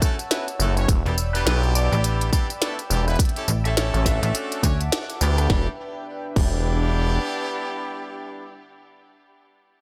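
A gritty, saturated sawtooth synth bass sits up front in this swaggering glitch hop cut at 104 BPM in E dorian, entering at 0.6 seconds alongside a snappy, metallic FM bass that joins at 1.1 seconds, over a punchy layered electronic kick and a glitchy kit of tiny snare, clicky hats, rim clicks, tambourine and crash. Brilliant, tight jazz-style horn stabs with vibrato and tape echo punch against a mellow, detuned analog pad with chorus and 12-bit sampler grit, both pumping against the kick, while a dark, lo-fi overdriven lead guitar sits in the background. The swung groove moves through chords like F#m7, Em7, A7 and Dmaj7, with a band accent at 4.9 seconds before a new section arrives, all in a dry, close mix.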